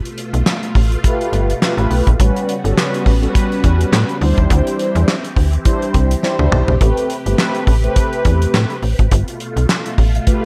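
A snappy, slap-like FM bass with a metallic attack sits up front in this funky, slick early-eighties boogie funk excerpt, alongside a damped 70s drum kit with a fat snare, tight kick, handclaps, hi-hat and toms, touched by gated reverb and broken by a drum fill at 6.2 seconds. Mellow, brassy synth brass with detuned sawtooth tone and a filter sweep enters at 1.0 seconds under chorus and phaser, while a swirling, vintage string machine holds bright sustained chords through ensemble chorus and phaser. Chords of G9, A13, D9sus4 and Am9 move beneath a dry, swung mix.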